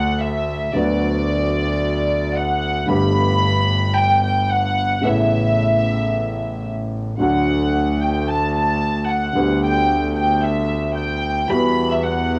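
A rubato tango pulse in 4/4 at about 112 BPM carries this passionate, sultry passage in D major, taken from a longer piece, with harmony drifting from D through Gadd9 and Aadd9 to close on Emadd9. Up front for the full 12.4 seconds, a bowed studio violin section takes the spotlight with soft-attack, sul tasto tone that sounds pure and floating with a smooth top, while a warm grand piano accompanies and a single bowed double bass adds a biting, earthy low line with light vibrato. The violins and piano carry cassette-tape coloring and plate reverb, and the whole take has the intimate feel of a home cassette recording in a wet room with a short 0.5-second decay.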